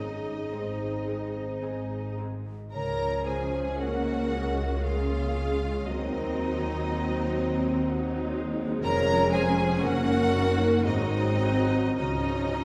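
A rich, reverberant concert-hall sound heard from further back frames this tender, lyrical classical passage in Db major at 58 BPM in a rubato 3/4, where a focused, vibrato-laden violin section carries the melody over a hollow, airy flute and a lush, distant second violin line, while bowed violas with portamento, mellow background French horns, a very quiet ringing harp playing arpeggios, warm cellos and woody double basses fill out the texture, all moving from Ab through Cdim/Eb and Ab7 to settle on Db at 12.0 seconds in this fragment of a longer piece.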